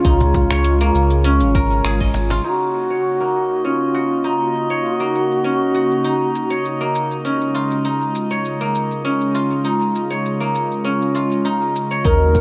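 A mystical, gently glowing organic downtempo excerpt at 100 BPM in 4/4 with a light swing on the sixteenths, moving from a Db chord to Ebm7 as a filter sweep on the smooth, detuned sawtooth analog pad begins at 2.4 seconds. An airy bamboo bass bansuri with vibrato and delay carries the melody until 6.9 seconds and returns at 12.0 seconds, while a silvery, ringing guzheng plays delayed, filtered arpeggios up front, and a glassy texture of drifting overtones hovers quietly in a soft reverb. The deep, round sine sub bass and electronic kick drum anchor the opening and return at the end, a woody cajon played with soft hands sounds very quietly near the start, and a produced afro-pop kit of finger snaps, metallic hi-hats and shaker, softened by low-pass filtering, ticks throughout.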